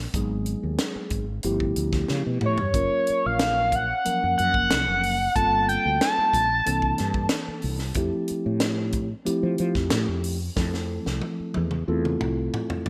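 Electric jazz fusion at 92 BPM in F major, soaring and slick, with a dark, round fretless bass under lush chorus, a tight funk kit with a high-tuned snare and gated reverb, and a mellow tine electric piano washed in phaser. From 2.5 to 7.3 seconds a gritty, screaming overdriven synth lead with vibrato and delay sits up front, carrying the melody over lush extended chords such as Gbmaj7, Gm11 and C13. Drum fills mark 2.1 seconds and the closing stretch from 10.6 seconds, all set in a bright 1980s-style digital production with plate reverb.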